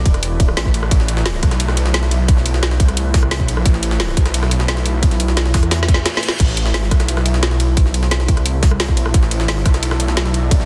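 A dense, heavily limited and fairly dry mix carries this futuristic, aggressive stretch of dark technical drum and bass, cut from a longer piece and held on a single A minor chord. A tight electronic kick sits up front with a thick, chorused and overdriven detuned saw bass, while a layered drum kit adds a woody snare, metallic hats, rim clicks and crash, backed by a gritty, pitched-up jungle sampler kit with a high-tuned snare and filtered cymbals set further back. Underneath, a deep, moody pad with slow attack, chorus and reverb pumps with sidechain compression, and a drum fill from 5.7 seconds meets a soft reverse cymbal rising into 6.4 seconds.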